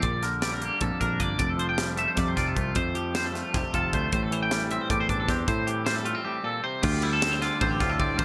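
Two twangy, clean electric guitars open this short excerpt of intricate, restless math rock and midwest emo in D minor: one picks compressed accompaniment with a subtle chorus while the other plays fingered arpeggios higher up, soaked in lush chorus, over a growly, foam-muted picked bass and an airy, polished fusion drum kit with a high-tuned snare, punchy kick and gated reverb. The band drives a 7/8 metre at 309 BPM in eighths with a straight feel, moving through Bb6, F69 and Am7 before a brief break at 6.3 seconds gives way to a Dm11 section at 6.8 seconds. The production is bright, 1980s-style digital work with light studio reverb, keeping the guitars and drums up front.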